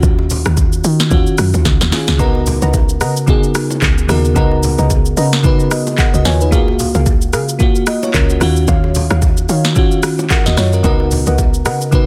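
A relaxed amapiano groove at 111 BPM in 4/4, with a 16th-note swing, rides on an electronic afro-pop kit of deep kick, sharp snare, smooth hats, shaker, rim click and handclaps, while a woody, punchy log drum bass holds the low end and ringing congas and bongos sit in the background, the kit marking a short fill at 1.7 seconds. Up front, a sparkling, bell-like FM electric piano with chorus carries the accompaniment over D#m9 and C#13sus4 and adds a fill around 5.4 seconds, and from 2.2 seconds a soft, nasal chord stab with a sub octave, filter sweep, chorus and tape echo joins the harmony. The mix is dry, dense and heavily limited, cut from a longer piece.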